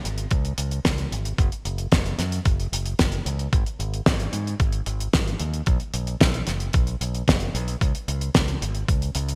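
A bright, direct fingered electric bass opens this nostalgic, melodramatic italo disco excerpt, sitting up front in a low register. From 0.1 s a damped 70s drum kit joins with hi-hat and a fat, dry snare with a rolled-off top, placed close in a small room with gated reverb, and at 0.3 s a thumpy, sampler-style electronic kick with a tape-tinged character adds weight. The straight 4/4 groove carries a gleaming 1980s-style digital sheen with light reverb.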